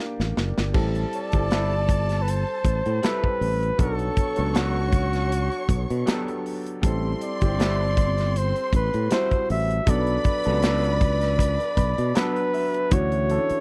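Lush 1970s-style soul with a gentle swing, where an up-front flugelhorn carries the melody with a smooth top, scooped notes and vibrato over an expressive bowed string section, a boxy baby grand piano, a growly fingered electric bass and a punchy drum kit that opens with a fill, while a twangy, slightly broken-up electric guitar riff with spring reverb sits in the background of a dry, close recording and the piano takes a fill at 11.4 seconds.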